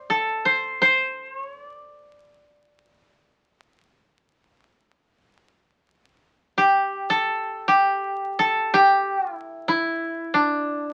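In free time, this calm, austere fragment of Japanese traditional chamber music features a solo koto, plucked with fingerpicks and sitting up front, its bright, woody, dry tone moving between D4 and E5 in a D suspended pentatonic mode tuned to A4 = 442 Hz. The playing slows from 6.2 seconds to the end at 10.9 seconds. A moderate studio reverb and the crackle of a very old 78 rpm record surround this short cut from a longer piece.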